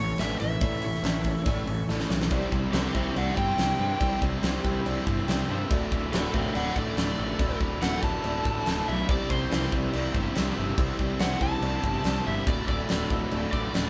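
A dark, overdriven slide guitar opens this driving, confident classic rock excerpt at 142 BPM over a faint organ with slow rotary swirl, a bright lo-fi garage guitar and a sludgy distorted guitar riffing in the background, and a growly fuzz bass, before a huge arena drum kit with a fat snare, punchy kick and bright cymbals arrives up front at 0.2 s alongside a metallic cowbell, a worn, reedy electric piano with fast tremolo enters at 0.4 s, and after a drum fill the slide guitar takes a solo from 2.3 s as the band plays live in a large, moderately reverberant room through A, C and Dadd9.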